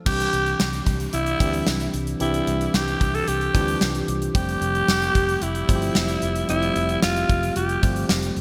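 An uplifting, romantic 1980s-style pop excerpt opens at 0.1 s with all four parts together, moving at 112 BPM in a straight 4/4 in C major. A raspy alto saxophone carries the melody up front, its clear, gritty pop tone shaded with vibrato as it sings between E4 and A4 until 8.1 s. Beneath it, a clean tine electric piano heard through a combo amp supplies the accompaniment, while a vintage muted fingered electric bass adds a dark, round, punchy foundation in the low register. The gated 80s drum kit sits up front with a punchy kick, a medium-tuned snare in a big, airy gated room, bright cymbals including crash and hi-hat, and tambourine. The harmony moves from Cadd9 to Fadd9 at 4.3 s, all wrapped in a lush hall reverb and a polished, bright digital production typical of the era.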